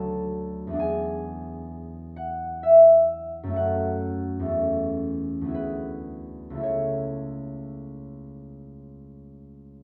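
This classical solo harp piece unfolds in A major with a dreamy, serene mood. It moves at a slow, flexible 53-66 BPM in 3/4, with a rubato feel that lets the phrases breathe freely. The concert harp plays alone for the full 9.8 seconds, its thumb-plucked notes ringing and sitting up front, spanning C#2 to B5. The harmony drifts from D through E7 and F#m before settling toward A/C# at 6.6 seconds. A moderate concert hall reverb and a dark production frame the acoustic tone, and the passage is cut from a longer piece.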